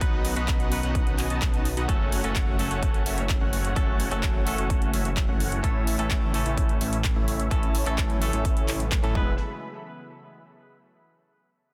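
A dense, heavily limited, dry master carries this euphoric, anthemic festival progressive house passage at 128 BPM, where a punchy, up-front electronic kick and a big-room drum kit of handclaps and metallic hi-hats drive a huge, filter-swept supersaw riff with dub echo, a twangy, direct-recorded clean electric guitar, a warbling vintage unison pad with chorus and a thick, saturated detuned saw bass, all pumping to the sidechain through B, F#m, A and E before the harmony drops out at 9.4 seconds.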